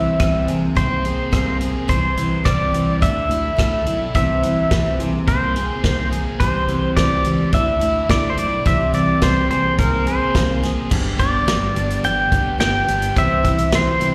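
A bright, compressed pedal steel guitar carries the melody up front with fingerpicked slide lines and volume swells in this open-road, nostalgic folk and heartland rock excerpt, backed by a full-bodied jumbo acoustic guitar with audible finger squeak, a scooped, double-tracked overdriven electric guitar riff, a round fingered bass and a punchy, natural country drum kit that enters at 0.2 s, the band heard as a live gig through a venue's PA in recital-hall reverb, with slapback echo on the three guitars and the harmony moving to G at 10.9 s.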